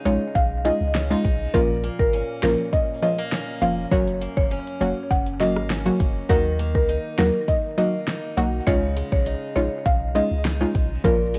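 A woody, buzzing marimba carries the melody through tape echo in this bouncy, hypnotic dancehall excerpt at 101 BPM, over a chorused, detuned sawtooth analog pluck, bright picked steel-string acoustic guitar arpeggios with finger squeak, a punchy tube-saturated sine sub bass and an up-front deep house kit of deep kick, fat snare, rim click and metallic hats, cycling through Dbadd9, Bbm, Gb and Ebm in a home cassette recording with light reverb and nothing above 8.0 kHz.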